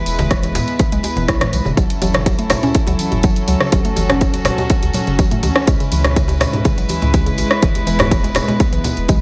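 A small-room ambience frames this warm, hypnotic afro house excerpt at 123 BPM in F# minor, where distant, floating chamber strings hold sustained chords and a woody, mellow FM mallet pluck spins background arpeggios through chorus, phaser and dub echo, both pumping with the round sine sub bass, while a punchy, overdriven electronic kick up front and an overdriven house kit of hi-hat, rim click and toms drive a drop at 1.8 seconds, with warm congas, a tight, cracking djembe with metal rattles and a jingly tambourine tucked behind as the chords move from E through F#m7 and C#m7 back to E.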